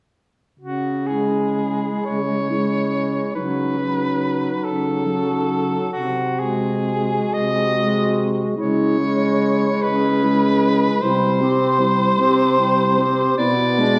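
A classical, elegiac excerpt for a single-reed quartet in C# minor, moving at a slow, rubato 6/8 pulse of about 40-53 BPM in dotted quarters. The clear soprano saxophone carries the solemn melody up front with vibrato and a smooth top, while the mellow baritone saxophone anchors the bass with light vibrato and a vintage tone; from 1.1 s the soft-attack tenor saxophone adds roomy accompaniment and the clarinet sings a distant second line in the background. A wet recital hall reverb places the ensemble further back in the room, and the harmony drifts from C#m through a C chord before settling on E7/B.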